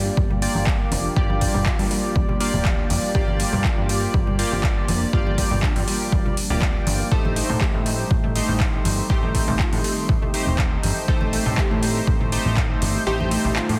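This progressive house track in G minor moves at 121 BPM in a straight 4/4, carrying an emotional, dreamy mood as the harmony shifts from Gm7 to Am7b5 at 7.1 seconds. A retro, glossy polysynth plays chorused stabs with digital delay and sidechain pumping. Beneath it sits a funky analog bass built from sawtooth and square waves with ring modulation and a filter sweep. A lush, detuned unison pluck traces arpeggios in the background, also treated with delay and pumping, while a very quiet, shimmering ambient pad holds ethereal, granular chords with an octave-up sheen. The punchy, overdriven electronic kick and a deep house kit of handclaps and metallic hi-hats drive the groove, joined by bright, close acoustic congas mixed very low. The kick stops at 12.7 seconds, and the dense, heavily limited master frames the parts in light reverb and a digital ambience.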